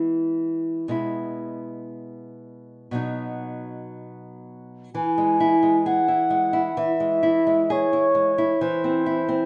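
Romantic duo for flute and classical guitar in E major, lyrical and warm, moving at a rubato 59-67 BPM in 4/4, where an up-front, small-sounding fingerpicked nylon-string guitar opens alone with chords from E to B before a pure, woody baroque flute with vibrato, a crisp attack and rolled-off highs enters at 4.9 s to carry an expressive melody, the harmony darkening briefly to a rootless A minor over E at 8.6 s, all set in a moderate recital-hall reverb.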